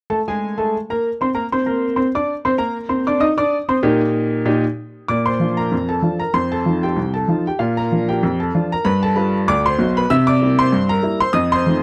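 A dry, close recording with the intimacy of a 1970s studio captures a solo upright piano in this short, cheerful ragtime cut from a longer piece, moving at 96 BPM in 2/4 with a light swing in B-flat major. The piano sounds woody and up front, its long sustain ringing over audible action noise as it spans from B1 to E6. The first section rests on B-flat and E-flat harmonies, and from 5.1 seconds the second section turns playful through F7, G7 and C7.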